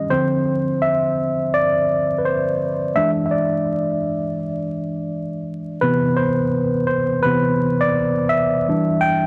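A worn, slightly out-of-tune tine electric piano opens this short cut from a longer hip hop piece, playing alone and up front at a relaxed 84 BPM in 4/4 with a 63% swing on the sixteenths. The mood is cosy and mellow in C major, with the piano moving from Dm9 to E7 before shifting at 5.8 seconds to Cmaj7 and then to Em7 at 8.7 seconds, just before the close at 9.3 seconds. Its tone is clean yet softened, passed through cassette tape and a low-pass filter, and it sounds as if heard through built-in speakers. The piano spans C3 to G5, and a moderate plate reverb with a 2.5-second tail gives it a gentle halo. Vinyl crackle sits beneath the whole passage, adding a dusty, lived-in texture.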